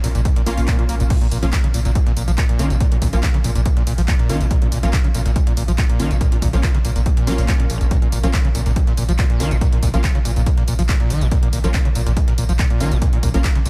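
A straight 4/4 pulse at 141 BPM drives this dark, hypnotic stretch of peak-time techno in Bb minor, cut from a longer piece and resting on a single Bbm chord throughout. An analog drum machine carrying crash cymbal, handclaps, hi-hat and tambourine with sidechain pumping runs from the very start, and an up-front, punchy layered electronic kick lands on it from 0.3 seconds to anchor the groove, while a very quiet, gritty sampler-style breakbeat kit adds compressed hi-hat and a medium-tuned snare underneath. A round, sine-based sub bass holds a deep, mellow Bb1, overdriven and low-pass filtered, pumping against the kick. Over it, a squelchy, screaming acid line built from a resonant sawtooth snarls between Bb1 and Bb3, distorted and bright with filter sweeps, analog chorus and delay. A thick, detuned unison rave stab sits in the background between Bb3 and F4, its plucky decays smeared by chorus, reverb and delay, and a barely audible electronic swell flickers by near the start. 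The whole track sits in light digital ambience.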